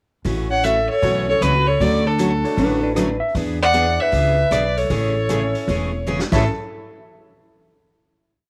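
Cheerful and playful, this short western swing piece has a clear, focused fiddle with light vibrato and slapback echo carrying the song-phrase melody up front, while a raspy, growling clarinet follows mostly in thirds, over a pizzicato upright bass with a woody, thumpy two-beat root-and-fifth line with walk-ups, a bright dreadnought acoustic guitar picking four to the bar with audible finger squeak, syncopated close-voiced comping from a brilliant upright piano in the background, and a vintage drum kit with dark cymbals keeping time on the hi-hat, as a clean lap steel slides in with answering blues licks at 2.6 s before a drum fill leads to a final hit at 6.5 s, all in a light small-room reverb.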